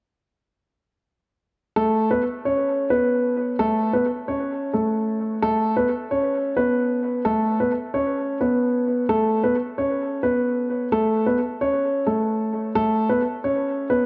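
A mellow, intimate grand piano melody enters at 1.8 seconds and carries this melancholic, dark hip hop excerpt in a half-time feel until 14.1 seconds, its smooth, vintage tone sitting up front with audible action noise, softened by a low-pass filter and trailed by dub echo over an Aadd9 chord, inside moderate spring reverb and an echo-heavy mix.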